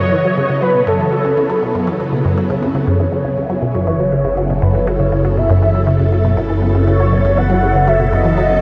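Soaked in a huge ambient reverb and a cassette-tape haze, this hypnotic, cosmic stretch of sequencer-driven space music sets a round, horn-like synth lead with vibrato and tape echo over a swirling, phased string machine holding sustained chords and a juicy, squelchy blip pluck riff, and a nasal, evolving analog drone bass joins them at 4.1 seconds.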